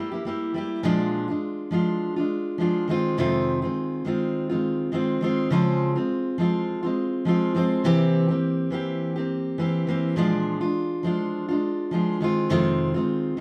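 Pop with a tender, reflective mood, this short cut from a longer piece features a fingerpicked steel-string dreadnought acoustic guitar playing alone, its full-bodied tone sitting up front. The gentle sixteenth-note swing carries the guitar through a moody progression that moves from C7 and Bb7 to Fm7 and Dbmaj7 and back again. A studio reverb lends the live room sound a soft, airy halo.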